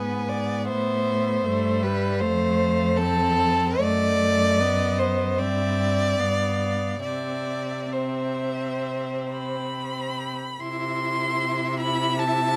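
Set in a moderate studio reverb, this slow, yearning and elegiac movement for string quartet, taken from a longer piece, unfolds in 4/4 with a flexible rubato feel. Each of the four bowed players uses vibrato, and the first violin carries the high melody with a soft attack and expressive portamento, while the close, up-front second violin sings a supporting line beneath it. The viola fills in a smooth, even accompaniment and the cello anchors the bass from a more distant place, as the rich harmony moves through Am7, F and G7 before settling on C.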